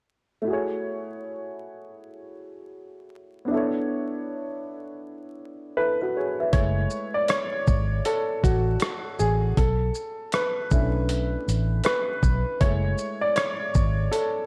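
Lo-fi hip hop in F# minor at 79 BPM, with a hazy, melancholic mood and a swung 4/4 feel, drifting between F#m9 and Bm11 chords. A dark, woody, slightly detuned upright piano plays alone at first, then takes a solo from 6.5 seconds as a round, foam-muted vintage electric bass and a gritty, compressed sampler-style drum kit with a thumpy kick, rim click, hi-hat and shaker enter up front, the drums carrying a large-room character. Light reverb and a bed of vinyl crackle add to the dusty atmosphere of this fragment cut from a longer piece.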